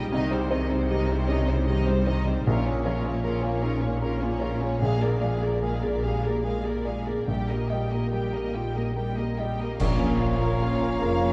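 A dusky, softly reverberant scoring-stage sound frames this bittersweet, longing film-score excerpt in a rubato 6/8. Lush violins with expressive vibrato carry the melody over a smooth second violin line, joined by a prominent, intimate felt-muted upright piano with audible action noise, a very quiet ringing harp, gliding violas, focused cellos and a soft-attacked double bass section up front, while dark cymbals, a cymbal swell and concert bass drum enter at 7.3 seconds. At 9.8 seconds an accent marks the arrival of an airy flute, a shadowy clarinet, a mellow cor anglais and a distant, tight French horn section holding chords.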